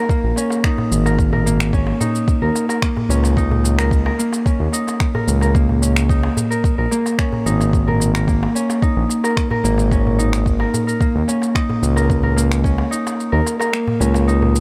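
Meditative, mystical organic downtempo in a straight 4/4, cut from a longer piece, where a fingerpicked Celtic harp rings out up front in arpeggios trailed by tape echo over a smooth, gliding, wave-folded sawtooth synth bass with saturation, vibrato and portamento, while a soft electronic kick sits up front until it stops at 12.8 seconds, layered, overdriven electronic shaker and finger snaps add grit, and a clay-shell darbuka played with hard hands stays in the background, all in a dry mix with little reverb.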